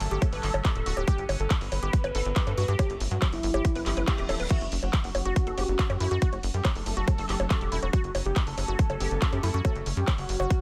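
Psychedelic trance at 140 BPM in a straight 4/4, this intense, heady excerpt sits in F# phrygian and is cut from a longer piece. An overdriven electronic kick punches up front from 0.2 seconds, joined by a layered techno kit of bongos, handclaps, crash and warm hats that carries a large-room ambience. Beneath it, a tight sequencer bass drives with fast-attack, decaying sawtooth and wave-folded tones shaped by a moving notch. A woody, percussive wave-folded pluck plays the riff through chorus, cassette-tape color and tape echo, while a thick, detuned unison lead with a sub octave and vibrato carries the dark melody through phaser and tape echo. Both the pluck and the lead breathe with sidechain pumping, as does a bright, morphing wavetable pad that holds chords in the background with phaser and its own reverb. A very quiet, saturated formant-sweep wobble bass adds a second line, and a reverse cymbal rises in the background from 4.0 to 4.5 seconds as the chord moves from G to F#.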